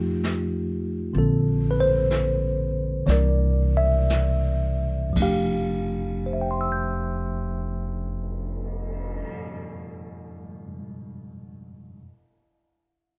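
A worn, slightly out-of-tune tine electric piano sits up front with a mellow, clean tone, carrying the chords of this intimate, romantic jazz ballad in F major from F9 through Bbmaj9 and C9 to a closing F69. Beneath it, a woody, growly pizzicato upright bass and a distant, roomy brush kit with dark cymbals and a boomy kick move at a swung 55-66 BPM in 4/4, with the tempo slowing through the first 5.2 seconds. The bass drops out at 9.2 seconds and the drums at 9.3 seconds, leaving the piano alone in light reverb until the fragment ends at 12.0 seconds.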